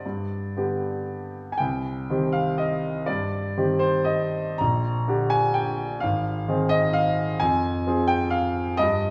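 Classical piano waltz in 3/4, bittersweet and elegant, in which a solo concert grand sounds clear, open and up front with deep bass, its rubato phrasing ringing in a moderate scoring-stage reverb across this 9.1-second passage cut from a longer piece.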